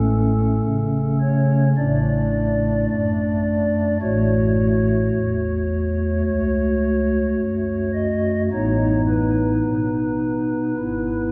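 Set in a straight, unhurried 4/4 at 53 BPM, this reverent, majestic classical chorale for solo pipe organ moves from A through D/A, F#m/A and B7/A before arriving on E/G# near 10.8 seconds. The stopped flute register sounds soft, hollow and mellow, with tremulant and a romantic voicing spanning G#1 to D#5, and it sits up front in the mix. A long, wet church reverb of about three seconds surrounds the playing throughout this short excerpt, which is cut from a longer piece.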